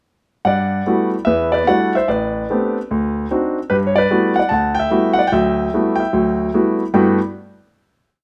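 A solo concert grand piano enters at 0.4 seconds with intimate, up-front tone, audible action noise and deep bass, playing a relaxed, sophisticated swung jazz piece in G major at 148 BPM, where motif-based call phrases over a stride bass and close voicings move through Gmaj13, Em11, Am11 and D7b9 back to Gmaj13, in a moderate studio reverb, before settling on a final chord at 6.9 seconds.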